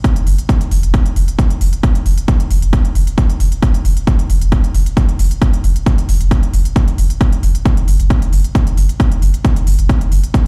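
A straight pulse drives this dark, industrial peak-time techno excerpt, where a heavy, overdriven, up-front kick with small room ambience anchors the groove, quiet, smooth overdriven hi-hats pump under sidechain compression, and a deep, thick sub bass with a triangle tone and fast attack sustains beneath them, up front, tube-saturated, pumping and rounded by a low-pass filter, all sounding as if played on a big sound system in a bare room.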